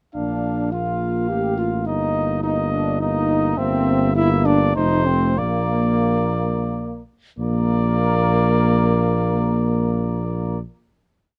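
Close, detailed microphones and light reverb frame this short, noble classical piece for brass quintet in 3/4, which slows between 2.7 and 7.4 seconds before settling onto a final chord. A warm cornet with light vibrato carries the melody, while a dark, smooth-topped trumpet doubles the tune in unison and at the octave, the French horn adds a melodic line in the background, and the close-miked trombone holds sustained chords in the rhythm of the tune. Up front, a mellow tuba anchors everything with sustained bass notes and passing tones.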